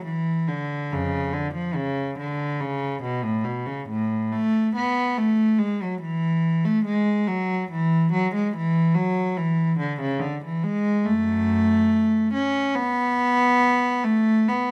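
Dance-like and flowing, this short cut from a baroque-style suite movement for unaccompanied cello moves at 71 BPM in 4/4 with a rubato feel, in F# minor and tuned to A4 = 439 Hz. A single bowed cello plays solo throughout the 14.7 seconds, ranging from E#2 to C#4 with a rich, reedy gut-string tone in period style. Close, detailed microphones keep the instrument up front, with light reverb around it.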